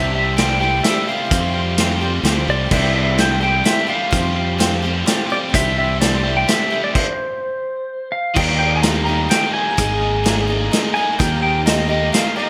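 A nostalgic, open-road excerpt of folk rock and heartland rock in 3/4 at 127 BPM opens with a clean, compressed pedal steel guitar carrying the melody over a growly fingered electric bass, a double-tracked overdriven electric guitar riff with lush chorus, a boxy picked swing-style acoustic guitar, a woody, slightly detuned upright piano and a very quiet dark string section with portamento; a punchy vintage drum kit with gated reverb and dark cymbals enters at 0.4 s, the mix sits in a bright 1980s-style digital sound with lush hall reverb, and after a chordless stop at 6.9 s the key moves from C major to E-flat major at 8.4 s.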